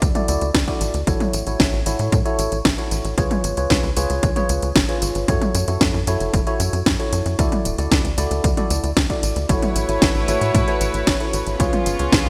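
A danceable, playful italo disco excerpt at 114 BPM in A major opens with up-front tine electric piano stabs, clean through a combo amp with lush chorus, digital delay and a filter sweep, over a tight, nasal sawtooth sequencer bass with tube saturation, a punchy overdriven electronic kick, and a house drum kit of cracking snare, metallic hi-hats, tambourine and toms, all set in a lush hall reverb with bright 1980s-style digital production, before a reedy, bowed studio string section joins with sustained chords at 9.5 seconds over a progression moving from Dadd9 through A6, C#7 and F#m7.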